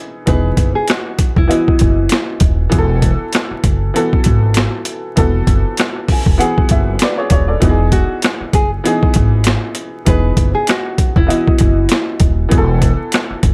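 A dark, mellow upright piano opens this boom-bap hip-hop excerpt alone at 0.0 seconds, its worn, boxy and slightly detuned tone carrying a cassette-tape character and short sustain as it lays down lush major-seventh harmony. At 0.3 seconds a gritty, sampler-style drum kit arrives up front with a thumpy kick, high-tuned snare and hi-hat, compressed, pitched down and overdriven, with the ambience of a large room baked into the sound. A pizzicato upright bass with a woody, steel-string tone enters alongside it and holds a low foundation. A thumb-plucked nylon-string guitar traces a short, dark classical-flavoured melody near the start and returns at 7.9 seconds, filtered and trailed by tape echo. Vinyl crackle sits over a dry mix with little reverb, and the loping, swung groove gives the whole piece a confident, soulful mood.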